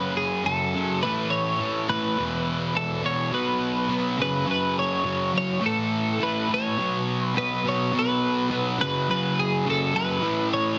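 A double-tracked, distorted fuzz guitar riff and a clean twelve-string electric guitar melody with spring reverb open this anthemic, bittersweet rock cut together at 0.0 seconds, both bright and up front at a straight 104 BPM in 4/4. The fuzz riff sits low while the twelve-string line rings higher over a cycle of F#5, A5, E5 and B5 power chords that begins again at 7.9 seconds. A large studio ambience and a heavily compressed, radio-ready sound carry the piece until it cuts off at 10.8 seconds.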